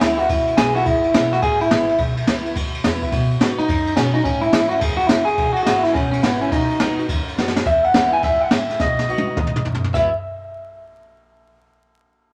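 From the first beat, an up-front electric guitar through a small old amp carries the melody with a slightly broken-up, compressed bite and a splash of spring reverb, while a bright picked dreadnought acoustic guitar with fresh strings supplies accompaniment in the background. This is upbeat, rowdy rockabilly in E major at 212 BPM, swung on the eighths and cut from a longer piece, with the chords moving through E, B and A. Underneath, a pizzicato upright bass with gut strings gives a woody, thumpy low end, and a brush-played jazz kit sits up front with a boomy kick, a high-tuned snare, dark cymbals and a rolled-off top. The drums play a fill at 7.4 s as the tune moves into a new passage, then another from 8.8 s to 9.9 s, when the harmony lands back on E. A moderate studio ambience surrounds the band, along with vinyl crackle and a faint mains hum.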